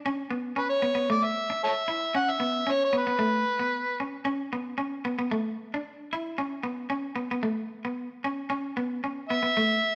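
A straight highlife groove in 4/4 carries this carefree, joyful excerpt, where a bright, twangy electric guitar at the edge of break-up picks suspended and add9 chords up front from 0.1 s while a gritty, overdriven harmonica with light vibrato and tongue slaps punches out a pop-style solo melody from 0.6 to 4.0 s and returns briefly at 9.3 s, the band playing live together in a stone room with a wet reverb.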